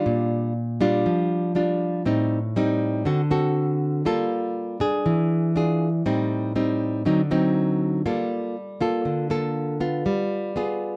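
Wistful and intimate, this brief bossa nova fragment features a single nylon-string guitar, fingerpicked in a classical style and placed up front in a dark, warm production with light reverb. The guitar moves through rich jazz harmony such as Am7b5, D7b9 and Gm9. A new section begins at 8.1 seconds and closes on a tense G7b9 at 10.1 seconds.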